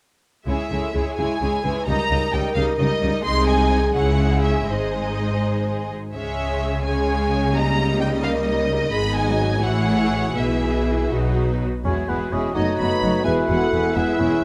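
Classical: a dramatic, urgent and restless fast romantic orchestral movement in 6/8 at 80-88 BPM in dotted quarters, played with rubato in C# minor before turning to E major at 8.9 s. Throughout, lush bowed violins carry a smooth melody with vibrato over an expressive second violin line, with focused violas, mellow sustained French horn chords and a bass of close, rich cellos and even double basses, while a distant, soft-attacked cor anglais and a light-vibrato bassoon join at 11.8 s, a roomy background clarinet just after, and a pure, straight-toned flute ensemble at 12.5 s, set in light reverb and captured by close, detailed microphones.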